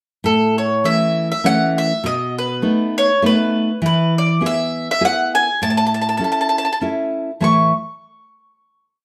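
A nylon-string guitar opens at 0.2 s, setting out a full-bodied, deep classical accompaniment of fingerpicked bass notes and oompah chord figures in an easy 3/4 at 101 BPM. A moment later the mandolin enters, carrying a woody, double-string picked melody built from short motifs shaped into balanced period phrases. The feel is a lively, romantic Italian folk serenade in A major, with a gentle swing on the eighth notes and harmony moving from A through B7 and E before coming home to A. The mandolin sits up front, touched by a slapback echo and a plate reverb that give its warm tone a little shimmer. The guitar is also up front, and both parts sit in a moderate studio room before the piece settles onto a closing chord from 7.4 s to the end.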